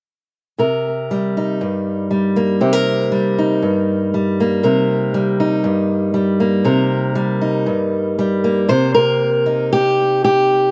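Folk for solo fingerstyle acoustic guitar at 118 BPM in 4/4 with a straight feel, this hopeful excerpt cut from a longer piece has a fingerpicked steel-string acoustic guitar, bright with fresh strings, audible finger squeak and a slapback echo, sitting up front from 0.6 to 10.7 seconds across a range of G2 to C5, opening on Cm7 and moving into a new section at 8.7 seconds, all captured outdoors with little reverb.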